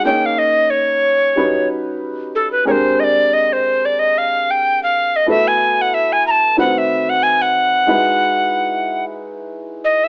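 An up-front alto recorder, airy with vibrato and a tongued chiff, carries a smooth, warm solo through this short hip hop cut at 92 BPM with a gentle 16th-note swing, over a dark, woody, slightly detuned upright piano moving through jazzy chords from A#m7 to Emaj9, all in a moderate studio room with an AM radio tone.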